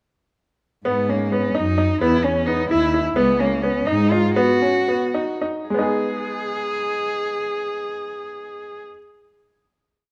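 Heard in a moderate scoring-stage reverb, this short, restless and pensive contemporary chamber piece in 5/8 sets a rich, smooth bowed cello with vibrato singing a motif-based melody in sentence phrases over a brilliant baby grand piano's arpeggiated ostinato, while a dark, woody second cello bows root-and-fifth bass on the main beats until 4.3 s, and the music slows from 3.2 s into a final chord held from 5.7 s.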